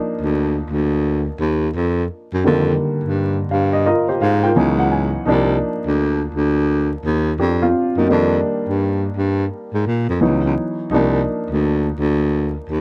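A breathy, whispered baritone saxophone carries the low bass line with mellow vibrato and a soft attack from 0.2 seconds in this late-night, soulful neo-soul cut, sitting up front beside an intimate baby grand piano whose natural tone, short sustain and audible action noise frame a swung cycle of a rootless Cm9 moving to F7sus4 and Dbm9, with a piano fill from 3.1 to 5.3 seconds, the whole set in a dark production with light reverb and vinyl crackle.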